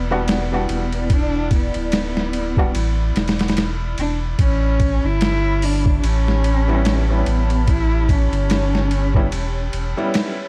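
A dry, dark mix dusted with vinyl crackle frames this melancholic, smoky trip hop excerpt at 73 BPM, swinging gently over Em7 moving to A9. A gritty, pitched-down boom bap kit with a thumpy kick and medium-tuned snare sits up front beside a round, tube-saturated sine sub bass, while a felt-muted upright piano adds soft, intimate accompaniment with audible action noise, tremolo and tape echo. A bowed cello carries the expressive melody with vibrato and portamento through 12-bit sampler grit and tape echo until 9.7 seconds, and a warbling, detuned tape-like pad drifts nostalgically in the background through chorus, phaser and its own reverb.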